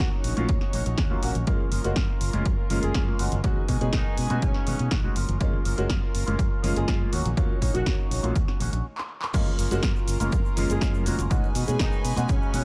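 A straight 4/4 groove at 122 BPM drives this joyful, funky filtered disco house clip in F# major, where a punchy, up-front electronic kick and an analog drum machine of snare, handclaps, hi-hat, shaker and crash cymbal, along with quiet, dry egg shaker and hard-hand congas, anchor a bright fingered electric bass, a clear, phased grand piano with long sustain, a dark, clean envelope-filtered guitar riff, gut-string chamber strings holding sustained chords with 12-bit sampler grit, and a mellow, distant horn section carrying the melody in octaves through tape echo, with the strings, horns, guitar, bass and piano pumping under sidechain and a low-pass filter over D#m7, F#maj7 and B6, before a stop at 8.8 seconds and a drum fill lead into the drop at 9.3 seconds.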